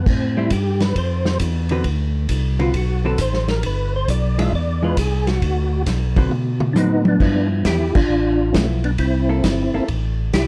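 A percussive tonewheel organ opens this greasy, swinging soul jazz organ trio at 134 BPM in G mixolydian, its round, clean melody soloing through slow rotary speaker and chorus vibrato until a drum fill carries it into the next section at 7.2 seconds. Beneath it, a second tonewheel organ plays the bass line with a fat, lightly overdriven tone and key click, and a vintage acoustic kit with dark cymbals and a tight kick sits up front. A picked, compressed hollow-body electric guitar comps from 0.4 seconds over chords moving from Am7 through E7b9 to G13 and C13, with a band accent at 7.9 seconds in a lightly reverberant mix.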